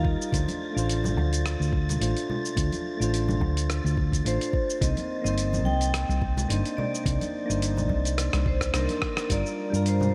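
A round, punchy hollow-body electric bass sits up front in this relaxed sunset chillout excerpt, its dark, amped tone anchoring a smooth, lightly swung groove. Soft electric-piano-like synth keys, mellow and gently decaying, share the foreground, colored by chorus, a low-pass filter, delay and shimmer reverb as the harmony moves through Dm7, Cm9 and Gm7. A soft, tape-warm electronic kick pairs with a gritty, compressed sampler-style kit of hi-hat, rim click and shaker, while ringing congas played with soft hands sit in the background, and a drum fill arrives at 8.2 seconds. At 4.3 seconds a vibraphone with medium hard mallets enters to carry the melody, its metallic ring and slow motor vibrato trailing through delay and shimmer reverb. An airy, breathy wind-like noise texture hovers faintly beneath, and the whole mix is dreamy, soaked in a lush hall reverb.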